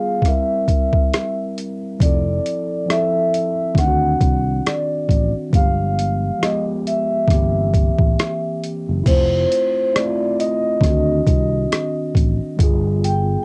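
A slow 68 BPM lo-fi hip hop groove in 4/4 with a lazy 16th-note swing rides on a gritty, pitched-down boom bap sampler kit of thumpy kick, rim click, hi-hat and crash, tape-warm and up front, while a growly, punchy fretless electric bass joins at 2.0 seconds. In F major, a vibraphone played with soft mallets carries the ringing, metallic melody with slow motor vibrato over a mellow tine electric piano, both softened by a low-pass filter and cassette tape through chords such as Fmaj7, D7b9 and G7b9. Cut from a longer piece, this dreamy, cosy home cassette recording sits in a moderate booth ambience.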